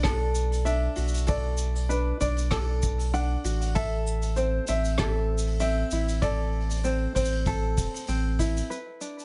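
Warm and pastoral, this short folktronica passage, cut from a longer piece, moves at 97 BPM in 4/4 with a gentle swing on the sixteenths, its chords shifting from Bm7 to Am and on to a rootless Gadd9. A felt-muted upright piano carries a soft, boxy melody with audible action noise, bathed in plate reverb and delay, over fingerpicked tenor ukulele arpeggios that are filtered and given the same reverb and delay, while a round, sine-like sub bass sits up front. A punchy, distant kick stays in the background alongside a roomy vintage brush kit with hi-hat, rim click and shaker, and at 9.2 s a reversed, detuned, granular texture surfaces very quietly on a bright A5.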